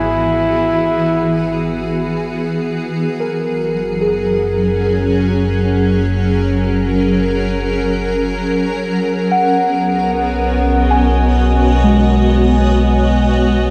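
A mellow flugelhorn with light vibrato plays an E4 through tape echo over Eadd9/G# for the first 2.3 s, over a blurred, evolving granular pad and a deep, ominous wave-folded drone that both fade in, before muted, felt-like synth keys with chorus enter at 3.2 s to arpeggiate over F#add9 and B69 in this spacious, reflective ambient piece, set in a wet scoring-stage room.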